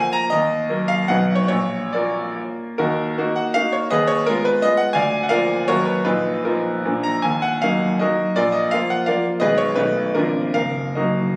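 Dotted rhythms drive this triple-time romantic dance in 3/4, which moves with a supple rubato somewhere between 132 and 186 BPM. Cut from a longer classical piece, the solo grand piano plays from 0.0 to 11.4 seconds in E-flat minor, ranging from Gb1 to Bb5, and the mood is nostalgic and wistful. An opening passage gives way at 2.8 seconds to a second section whose harmony leans on the dominant, with Fm7b5 over Eb, Bb7 over D, B7 and Bb7 over Ab, before settling toward Ebm over Gb. The piano sits up front with a clear, smooth, vintage character and long sustain. It is heard in a moderate recital hall reverb, captured on a phone in the room with a club-like ambience.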